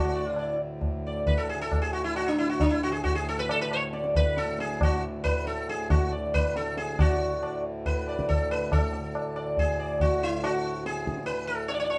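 Radiant and devotional, this Hindustani classical passage, cut from a longer piece, sets a buzzing, shimmering sitar up front over a reedy, breathing pedal-harmonium drone, with low-tuned tabla of short ring joining at 0.4 seconds as the live-room performance, wrapped in light reverb and a rounded top end, steadily gathers speed.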